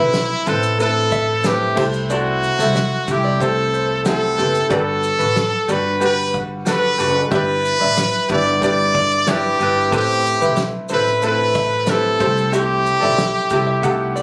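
A brilliant, forceful trumpet leads up front in this sunny, carefree slice of acoustic pop, its punchy pop-style solo line colored with vibrato and sitting in a range from E4 to D5. Beneath it, a fingerpicked ukulele adds a light, bright sparkle, while an open-back banjo plays plunky, twangy arpeggios tucked in the background. A bright upright piano, slightly detuned with audible action noise and a short sustain, fills out the accompaniment from behind. The pizzicato upright bass gives a woody, thumpy foundation, and a natural country drum kit with a fat snare, punchy kick, shaker and crash cymbal joins at 0.1 seconds. The harmony cycles through Amadd9, C6, Gmaj7 and Em7/G, and the recording is nearly dry with a touch of studio ambience, captured on a phone in the room, in a passage cut from a longer piece.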